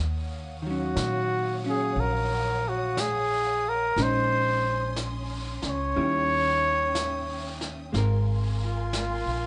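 Smoky and wistful, this slow jazz ballad excerpt in Eb minor swings gently at 60 BPM: lush, bowed symphonic strings and a woody, thumpy pizzicato upright bass open together; a dark, clean hollow-body electric guitar joins at 0.6 seconds, a breathy, mellow trumpet carries the up-front melody with scooped notes from 0.7 seconds, and a vintage brush kit with hi-hat enters at 1.0 seconds, all framed by light reverb over rich extended chords such as Ebm9 and Ab69.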